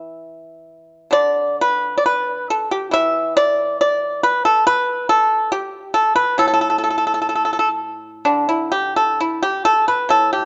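A solo pipa, plucked with fingerpicks, opens this brief passage cut from a longer Chinese traditional piece. It has a dry, percussive, up-front tone and ranges from A2 to E5 in the A shang mode, with tuning set to A4 = 437 Hz. The mood is pastoral and flowing, in a rubato 2/4 around 63-70 BPM, and it moves into a new section at 8.3 seconds. A moderate recital hall reverb and a dark production surround the instrument.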